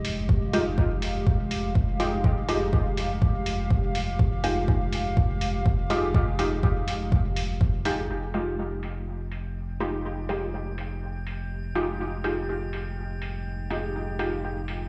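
A punchy, layered electronic kick drives this hypnotic, nocturnal dub techno excerpt in straight 4/4 at 123 BPM in F minor, over muffled, pitched-down hi-hats behind a low-pass filter, until the kick stops at 7.7 seconds. A round sine sub bass holds F1 beneath a moody, detuned analog pad voicing an Fm9 chord, both pumping against the sidechain, while muted sawtooth dub chord stabs sit up front with chorus, phaser, filter sweeps and dub echo. At 9.4 seconds a faint, eerie FM drone with a metallic, inharmonic edge enters on G5, and the mix carries a large studio reverb, as if played on a big sound system in a bare room.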